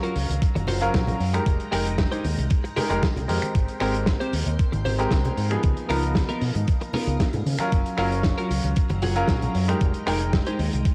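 Feel-good and sunny, this nu-disco excerpt at 115 BPM rides a thumpy, up-front electronic kick and a muffled vintage kit of finger snaps, hi-hat and snare, while a bright, envelope-filtered fingered bass enters at 0.2 seconds under brilliant baby grand piano accompaniment, a dark, clean electric guitar riff with chorus, grit and delay, soft-handed congas and a lush string machine in the background, all through cassette-tape haze and small-room ambience over Gbmaj7, Fm11, Abmaj9 and Db13 harmonies.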